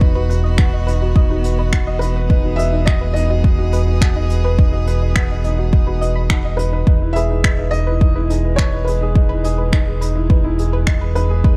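Tender and hopeful, this piano and strings electronica excerpt sets a boxy, felt-muted upright piano melody and a dark, mellow concert grand riff, both carrying tape echo and audible action noise, over sustained chords from a clear, bowed string quartet with vibrato. A round analog bass holds a deep low E and an up-front, layered electronic kick drives the groove, while a soft pluck with chorus and tape echo traces arpeggios in the background, and the bass, strings and pluck all share a sidechain pumping. A vintage brush kit with finger snaps and hi-hat adds a small-room, rolled-off texture from 0.3 seconds, as the harmony moves from B over E to Emaj7 at 6.9 seconds in a dry sound.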